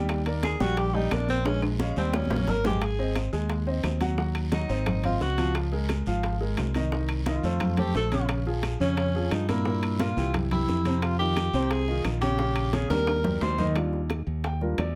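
A straight 4/4 Afro-Cuban jazz groove, lively and sunny, rides on ringing, high-tuned congas, tight bongos and metal-shell timbales in the background, with very quiet woody claves and a raspy guiro, under a bright, up-front fingered electric bass and a clear, natural baby grand piano, while a punchy, roomy tenor saxophone solos with vibrato, subtone and scooped notes from 0.4 to 13.7 seconds before the piano takes a brief solo at 13.8 seconds in this short cut from a longer piece.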